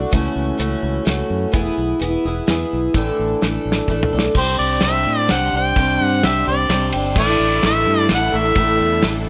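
Light reverb gives this nostalgic, open-road excerpt of folk rock and heartland rock in 3/4 a gentle sense of space. An up-front, shimmering twelve-string acoustic guitar with woody, octave-doubled chords plays alongside a round, fingered electric bass and a damped 70s drum kit with dark cymbals and a tight kick, whose fill leads into the second section at 4.4 seconds. There a bright harmonica takes the melody with light vibrato and scooped notes, and from 7.2 seconds a very quiet, lush studio string section adds sustained chords.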